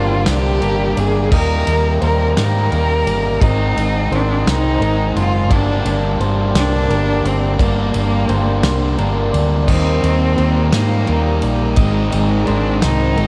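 A light reverb wraps this cinematic, melancholic post-rock fragment, cut from a longer piece, which moves slowly at 57 BPM in a straight 6/8 feel in G phrygian. A distant, bowed solo cello carries the melody with a rich, biting vibrato tone and analog delay, floating over a glassy, warbling FM pad that holds very quiet, ethereal chords with a slow attack and ensemble chorus. Up front, a fuzz guitar grinds out a compressed, picked riff alongside a round, punchy hollow-body short-scale bass, while a dark, slightly broken-up electric guitar through a small old amp plays fingered, lo-fi arpeggios with analog delay in the background. A loose indie drum kit with a tight kick, medium-tuned snare, ride and crash enters at 0.3 seconds, sounding acoustic and mid-forward in a small room. At 9.7 seconds a sludgy overdriven guitar joins with a riff of its own from the background as the harmony cycles through Gm, Eb and Ab.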